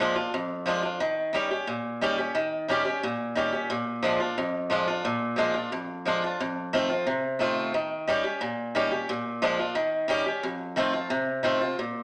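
A picked swing-style acoustic guitar plays alone from the first second, bright and boxy with audible finger squeak, sitting up front in a wet large-studio reverb as it runs through a retro, upbeat rock passage in straight 4/4 over dominant seventh chords from Bb7 to Eb7 and F7, in this short cut from a longer piece.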